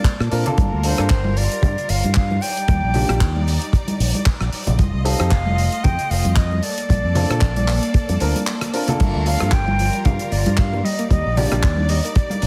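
A breathy, mellow flute melody with delay floats over lush, bowed symphonic strings that pump against a tight, dry kick up front, opening this sensual, groovy nu-disco excerpt with a light swing. A damped 70s kit of handclaps, hi-hat, rim clicks and crash joins with vintage shaker and congas in the background, a punchy fingered bass through an envelope filter, and an intimate baby grand piano with audible action noise. After a brief break at 8.5 seconds, a round, nasal analog pluck with chorus and phaser adds arpeggios from 9.0 seconds, all within a heavily compressed, radio-like small-room sound.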